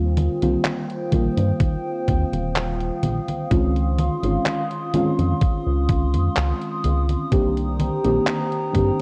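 Worn, warbling cassette tape and light reverb color this faded, nostalgic vaporwave excerpt, where a soft, round FM electric piano with lush chorus and tape echo moves through Eb69, Dbmaj9 and Cm7 over a glossy, nasal chorused synth bass, a lo-fi square-and-triangle pad sustains chords above, a detuned 8-bit drum machine supplies congas, handclaps and hi-hat from a large room, and a thumpy electronic kick joins at 1.1 seconds.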